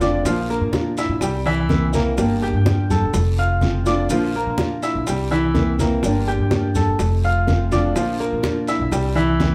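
A bright grand piano sits up front, its brilliant, natural arpeggios carrying a slapback echo over a relaxed, danceable Cuban son and guajira groove at 125 BPM in F major, cycling through Bb, C7, Gm7 and F across this 9.5-second cut. Beside it, a woody, dark upright bass with gut strings plays thumpy pizzicato lines up front, while a small, fingerpicked nylon-string guitar adds warm accompaniment. Low-tuned congas with a thick skin are struck with hard hands, and round, compressed, saturated bongos, a raspy guiro and grainy, mellow maracas sit in the background, all heard from further back in a room with moderate studio reverb.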